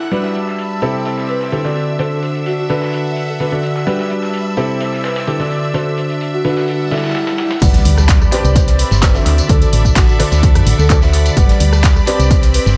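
Piano house with an uplifting, joyful mood, built on a woody, up-front upright piano riff over shimmering string-machine violins, reedy chamber strings and a soft, breathy flute-like synth lead in the background, with the strings pumping against the beat and echoes from analog delay filling a dry, echo-heavy mix. A tape-warm analog drum machine supplies crash, handclaps, hi-hat, rim click and tambourine, layered with a gritty, sampler-style kit of hats and snare set back in the mix, while the chords cycle through Gmaj7, Cmaj7 and D7. An electronic swell and impact rises from 6.9 seconds into the drop at 7.6 seconds, where a round, dark FM bass and a punchy electronic kick enter.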